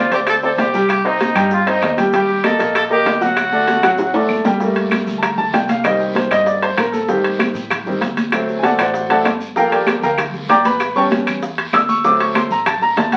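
A bright, brilliant upright piano takes a solo from 4.6 s to the end of this passionate, danceable salsa in G minor at 194 BPM, after a clear, punchy trumpet with light vibrato carries the melody until 4.3 s and a drum fill closes the opening, while a woody pizzicato upright bass sits in the background beneath ringing metal-shell timbales, tight high-tuned bongos, damped distant congas, dry claves, a raspy guiro and very quiet grainy maracas, heard through a wet studio reverb and the crackle of a very old 78 rpm record.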